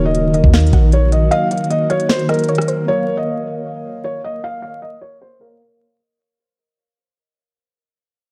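A felt-muted upright piano carries a soft, intimate melody through a low-pass filter and delay, beside a mellow tine electric piano with phaser, a round pluck sitting in the background, an ethereal detuned pad and a clean, boomy 808-style bass, all over an Eb minor chord in this brooding, melancholic trap excerpt in Bb minor at 154 BPM with a half-time feel. A trap kit with a knocking kick, sharp snare and crisp hats plays up front until 2.8 seconds, after the bass has stopped at 1.3 seconds for a break. From 2.9 seconds the harmony moves to Bb minor as the two pianos carry on alone through a filter sweep and fade-out, framed by a dark production with vinyl crackle and light digital ambience.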